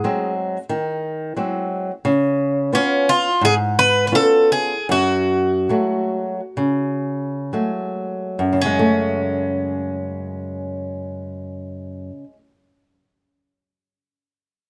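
In free rubato 4/4 that drifts between 55 and 91 BPM and slows from 2.0 to 8.6 seconds, this longing, passionate fado-style ballad in F# harmonic minor, tuned to A4 = 444 Hz and cut from a longer piece, sets a bright, metallic, double-strung Irish bouzouki melody against a warm fingerpicked flamenco guitar accompaniment with audible finger squeak, both up front and closely, dryly recorded as the harmony moves from G#7 to C#7 to F#madd9 and a new section opens at 8.6 seconds.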